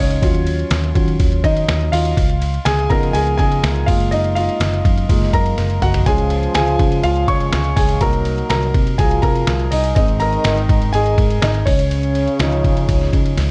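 Warm and uplifting, this piano-driven pop excerpt moves at 123 BPM in a straight 4/4 in Db major, with a clear, intimate concert grand carrying a solo throughout, its action noise audible and its deep bass natural and up front. A dark, round, foam-muted electric bass punches underneath, while a compressed, pitched-down trip hop sampler-style kit adds a thumpy kick, a medium-tuned snare and a fill from 5.6 to 6.1 seconds. At 6.1 seconds a mellow, distant French horn section enters with light vibrato in a classical style, as the dry, dark production moves from Ebm7 through Gbmaj7 and Cm7b5 to a closing Dbadd9.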